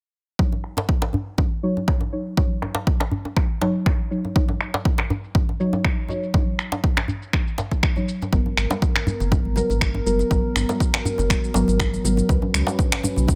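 Afro house at 121 BPM in Eb minor with a gentle 16th-note swing, this spiritual, driving cut opens with a punchy, overdriven kick up front, gritty overdriven shaker and finger snaps under a drum filter sweep, soft-handed deep djembe, and dark, detuned chord stabs with a 12-bit sampler grit pumping over Ebm7. At 8.3 s the harmony moves to Abm9 as a round sine sub bass with tube saturation and a smooth, warbling vintage pad with a slow attack enter, both pumping with the stabs, while bright, thin-skinned congas join quietly in the background at 8.6 s. A Db7sus4 arrives at 12.3 s, all set in a digital ambience.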